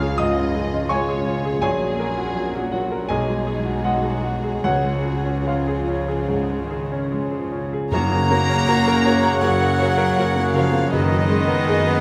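A clear, up-front concert grand piano leads this passionate, lush romantic excerpt in F# major at a rubato 72-86 BPM, carrying the melody over sul tasto strings: a shadowed violin section also singing the tune in the background, a tender chamber violin line, very quiet violas, floating cellos, and double basses and a punchy tuba beneath. A distant French horn section holds soft chords from 0.2 seconds, all bathed in the generous reverb of a recital hall. At 7.9 seconds the music broadens as an airy, hollow flute, a close oboe, a clear clarinet and a bassoon add inner lines, with a mellow trombone section sustaining chords, soft trumpet stabs in the background, and round, soft-mallet timpani on F#.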